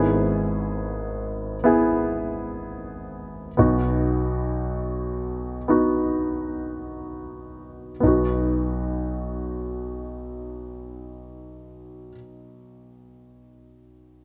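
A warm concert grand piano carries this heartfelt, emotional pop fragment on its own, its deep bass and short sustain sitting up front in a light reverb. Cut from a longer piece, the straight 4/4 accompaniment moves from an E/G# chord to B, slowing over the first 8.0 seconds before a new section takes over until 13.1 seconds.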